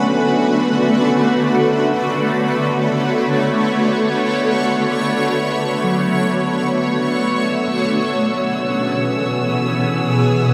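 Ambient excerpt in free time, spacious and melancholic, where a bright, shimmering pad with chorus and phaser holds sustained chords up front while a mellow tine electric piano plays phased, delayed arpeggios in the background, a reedy, breathing harmonium sustains a drone, and a rich chamber violin section with vibrato fades in high above as the piano and harmonium fade out, set in a huge, wet reverberant space as the harmony moves from Bm7 to E/B at 7.5 s.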